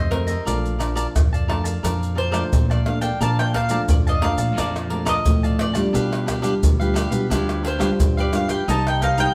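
Joyful and lively, this samba and choro excerpt puts a picked, woody mandolin with double strings on the melody over crisp cavaquinho and a full-bodied, thumb-plucked classical nylon-string guitar with audible finger squeak. A bright, punchy fingered electric bass sits direct underneath, while pandeiro, tamborim, maracas and a tight surdo, played with soft hands in a small-room sound, stand up front from 0.1 seconds. The band plays together in one room under a wet studio reverb, moving into a second section at 3.2 seconds as the harmony travels from Bbmaj7 through G7 to Cm7.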